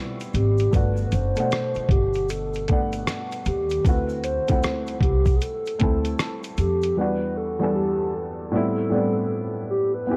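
Swung sixteenths drive this reflective, hazy lo-fi hip hop fragment, where a muffled, pitched-down sampler kit with a thumpy kick, hi-hat and rim clicks sits up front beside a woody pizzicato upright bass and a dark, slightly detuned upright piano with audible action noise, while a hollow clarinet-like synth lead with chorus and vibrato carries the melody, a grainy egg shaker lingers distantly in the background, and the dry cassette-tape sound leaves piano and lead playing on after the bass stops at 6.9 seconds and the drums and shaker at 7.0 seconds.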